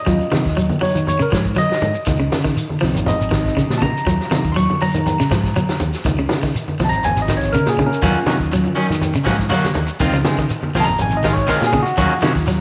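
Funky and driving, this afrobeat cut in Eb dorian moves at 121 BPM in a straight 4/4, with a barky, overdriven tine electric piano soloing through a phaser over an Ebm7 to Dbmaj9 vamp. Beneath it, a twangy, slightly broken-up electric guitar plays arpeggios through spring reverb and tape echo, while a round fingered electric bass, a vintage drum kit with a tight kick and medium-tuned snare, and background congas and grainy shekere keep the groove. At 8.0 s a second guitar enters up front with stabs under a subtle chorus, all set in a moderate echo chamber reverb.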